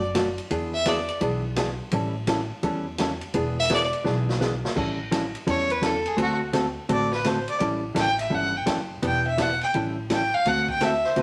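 A rich, airy-bowed fiddle with light vibrato carries the second line from 5.5 seconds in this playful, cheerful western swing excerpt, following brief, up-front phrases from a clear, earthy fiddle at the opening. Underneath, a dark, compressed hollow-body electric guitar plays clean, fingered accompaniment, and a woody, thumpy pizzicato upright bass on gut strings holds the low end. A swinging big-band drum kit with a boomy kick, snare, hi-hat, ride and crash adds a fill at 4.1 seconds, and wet studio reverb surrounds the band.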